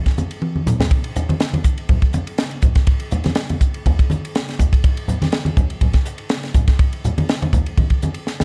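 Jazz with a bright, funky mood, this short passage cut from a longer piece rides a swung 4/4 groove carried entirely by percussion. A crisp fusion drum kit enters at 0.1 seconds, its airy, polished studio-room sound set up front, with hi-hat, ride cymbal, toms, a punchy kick and a high-tuned snare. Congas join at 0.2 seconds, also up front, their thin, low-tuned skins played with soft hands in a small-room acoustic. A drum fill arrives early, from 0.4 to 0.9 seconds, and another lands at 8.3 seconds as the passage closes. Light reverb and a dark, warm production frame the whole performance.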